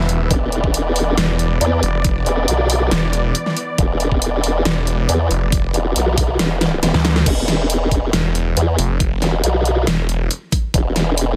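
A half-time 4/4 pulse at 138 BPM drives this menacing, heavy wobble dubstep excerpt, cut from a longer piece, where a knocking, overdriven electronic kick and a layered drum kit with a huge snare, bright hats and crash run throughout, with a drum fill at 6.6 s leading into a second drop at 7.3 s. Underneath, a formant-sweep wobble bass with chorus and overdrive sits up front beside a snarling, growling sawtooth bass with a resonant moving notch. Lush, airy supersaw chords, roughened by vintage 12-bit sampler grit, sidechain pumping and a low-pass filter, hold sustained harmony until 7.2 s, all set in a digital ambience.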